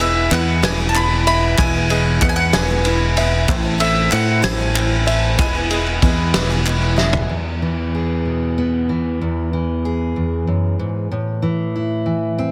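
An uplifting, nostalgic indie folk piece in a lilting 6/8, cut from a longer, building arrangement. A round, double-strung mandolin carries the melody through an analog delay, over a shimmering, octave-doubled twelve-string acoustic guitar and a plunky, twangy open-back banjo set in the background with its own delay. Beneath them, a punchy, fingered electric bass sits up front, and a loose indie drum kit with a fat snare and a gritty, saturated tone drives the groove on kick, snare, ride and toms, joined by very quiet, crisp group handclaps. A drum fill at 7.0 seconds closes the fuller passage, and from 7.3 seconds a full-bodied jumbo steel-string guitar enters, fingerpicked up front with audible finger squeak. The whole is bathed in light reverb and small-room ambience, with a dense, heavily limited modern master.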